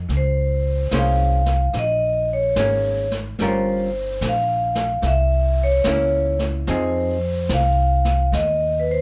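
A dark, clean hollow-body electric guitar and a woody pizzicato upright bass open this intimate, wistful jazz ballad in Bb minor at 73 BPM, set in a swung 4/4 over a Bbm9, Gm7b5, C7b9, Fm7 progression. Almost at once, brushes join on a distant, roomy drum kit, and a ringing, close-miked vibraphone with medium hard mallets and motor off takes the melody, sitting up front with the guitar and bass. The guitar drops out at 7.2 seconds, leaving vibraphone, bass and brushes in a light reverb for the rest of this fragment cut from a longer piece.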